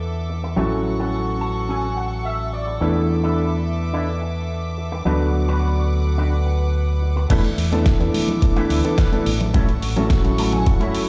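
Fingered electric bass with an envelope filter sits up front in this groovy, feel-good nu-disco excerpt at 107 BPM, joined by a bright, twangy envelope-filtered guitar riff with chorus, delay and sampler grit, pumping concert grand piano chords with deep bass, and rich, earthy chamber strings, before a drop at 7.3 s brings in a knocking electronic kick, a gritty sampler-style kit with a fat snare and distant high-tuned congas, all ringing in a stone room on a big sound system.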